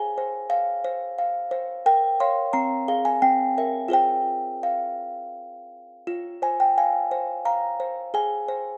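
In an uneven waltz lilt, a solo music box plays a fragile, eerie lullaby in a classical vein, its delicate, tinkling plucks sounding mellow and up front from a small box, wrapped in light reverb and a dark production as the phrase settles on a minor chord at 3.9 seconds before the opening passage returns at 6.1 seconds in this brief cut from a longer piece.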